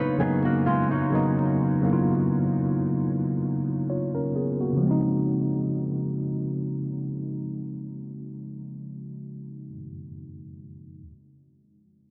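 The recording is steeped in a huge ambient reverb with a decay of 7.9 seconds, giving this dreamy, tender R&B fragment, cut from a longer piece, a hazy, floating atmosphere. At a slow 65 BPM in 4/4 with a light sixteenth-note swing, a tine electric piano carries the accompaniment from start to finish at 11.0 seconds, sounding worn, slightly out of tune and up front, with a clean, direct tone softened by a low-pass filter. Alongside it, a small, fingerpicked nylon-string guitar plays quiet arpeggios through a low-pass filter and analog delay, its acoustic warmth dropping away at 2.3 seconds. A filter sweep shapes the opening passage over a Cbmaj9 chord, and the harmony settles onto Dbmaj9 at 4.8 seconds as a new section begins. The piece sits in Db major with tuning slightly above standard pitch, adding to its gently off-kilter, intimate character.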